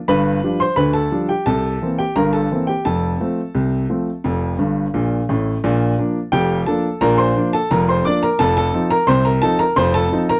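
Ragtime piano in Bb major, jaunty and cheerful, moving at 87 BPM in a straight 2/4. A lone baby grand carries the whole piece, its clear, natural tone placed up front and ranging from F1 up to D6. The opening passage moves through G7, C7 and F, and a grand piano fill from 4.6 to 5.6 seconds leads into a second passage that settles on Bb before turning to F7. The sound is dry and close, like a 1970s-style studio recording, with only light reverb around the instrument. This is a short cut from a longer piece and lasts about ten seconds.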